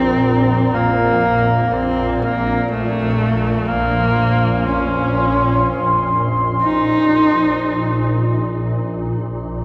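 Floating in free time, this cavernous, ominous dark ambient drone piece pairs an up-front, husky horsehead fiddle, bowed with vibrato and portamento and trailed by delay, which carries the melody until 8.1 seconds, with a moody, detuned sawtooth analog pad that sustains chorused, phased chords and a swarming, granular sine drone that hums low and tense up front in the mix, the whole passage cut from a longer piece and steeped in a cathedral-like reverb.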